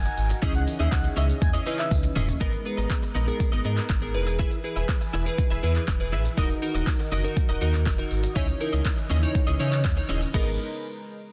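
Dance-pop in G# minor at 121 BPM, bittersweet yet confident, this excerpt opens on a drop where a smooth sawtooth lead with vibrato sings briefly until 2.0 seconds over a pumping sub bass, a shimmering pulse-width pad with phaser, glassy digital keys, a clean picked twelve-string electric guitar riff and an up-front deep house kit with claps, shakers and toms, then a drum fill at 1.9 seconds leads into a section moving through G#madd9, E, D#m and C#madd9, where a jingly tambourine returns at 6.4 seconds within a dense, heavily limited mix.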